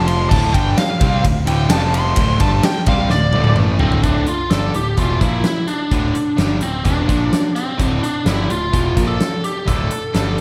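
Hard rock in D minor at 128 BPM, heavy and driving, where a biting, up-front lead guitar solos over two bright, double-tracked overdriven rhythm guitars riffing in the background with slapback echo, a growly, punchy bass, and a dark, smooth arena-sized drum kit with a fat snare whose fill at 3.1 seconds leads into a new section at 4.0 seconds, all set in moderate hall reverb in this excerpt from a longer piece.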